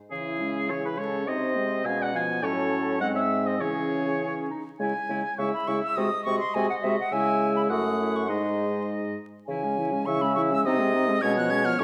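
A clear, punchy oboe sits up front in this dramatic, stormy classical-period movement for wind quintet, carrying a second line beneath an airy silver concert flute that leads the melody with vibrato and a soft attack. A bright clarinet and a French horn, both distant and roomy, fill in the accompaniment, while a mellow bassoon anchors the bass with light vibrato. Each of the five parts sounds from 0.1 to 11.8 seconds in a quick, straight 2/4, and the passage is clearly cut from a longer piece. The harmony circles around its minor home chord with returns to the dominant, and a new section begins at 4.8 seconds. A wet recital hall reverb surrounds the ensemble, and a layer of vinyl crackle gives the recording an aged surface.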